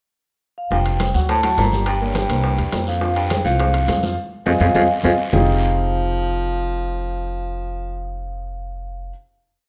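Driving and fiery, this short, complete Afro-Cuban jazz piece opens with a brief pickup before a vibraphone with soft mallets carries a mellow, airy, motif-based melody, shadowed by a bright baritone saxophone playing a scooped, octave-doubled second line. Underneath, a dark, intimate baby grand piano with audible action noise plays a montuno in octaves, while a growly pizzicato upright bass sits up front with a tumbao that anticipates the chords. Congas with slaps and open strokes, very quiet bongos in steady eighths with hand bell, ringing metal-shell timbales and a raspy guiro drive the groove until a band accent and drum fill land on the final chord at 5.3 seconds, ringing out in a moderate large studio reverb.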